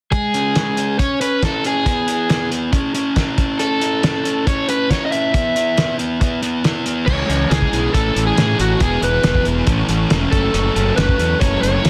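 A straight 4/4 pulse at 138 BPM drives this short indie rock excerpt, its mood jangly and wistful. A cloth-damped, thuddy drum kit sits up front with a fat snare, tight kick, dark cymbals and a muffled, gritty, rolled-off top, while a thick fuzz guitar plays a picked riff alongside it from the start. Above them a crunchy overdriven guitar carries the melody between F#4 and E5, its picked notes trailed by tape echo. The chords move through C#m7, E and C#m before shifting at 7.1 s to a passage running through C#m, A, E, A and F#m7. At that point a fuzz fingered electric bass enters with overdriven grit, and a second fuzz guitar joins in the background, colored by ensemble chorus and tape echo. Light reverb and small room ambience surround the parts, and the master is dense and heavily limited.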